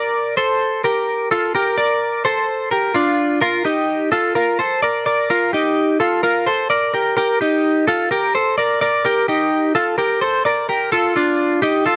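A clean, twangy twelve-string electric guitar plays alone up front, compressed and picked between D4 and D5 with light reverb, in this breezy, bright indie pop excerpt at 128 BPM in straight 4/4, moving from a rootless Ebmaj7 to Eb at 3.4 seconds and Fadd9 at 10.9 seconds in a dry, close 1970s-style studio sound.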